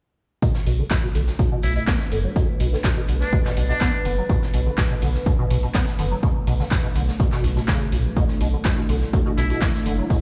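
A driving, trippy acid house excerpt opens at 0.4 seconds with a dry, punchy electronic kick up front, a faint brushed acoustic kit in the background and a squelchy, resonant acid bass riff whose filter sweeps throughout, coloured by phaser, tube saturation, ensemble chorus and delay. A round, deep analog bass and a booming drum machine with metallic hats and handclaps join at 0.7 seconds, and a moody, evolving pad sustains a dark Bm7 chord with chorus and sidechain pumping. A muted trumpet with a buzzy, thin tone, vibrato and scooped notes plays a short melody through digital delay from 1.6 to 4.1 seconds, returning briefly near the end, all set in a stone room reverb heard over a big sound system.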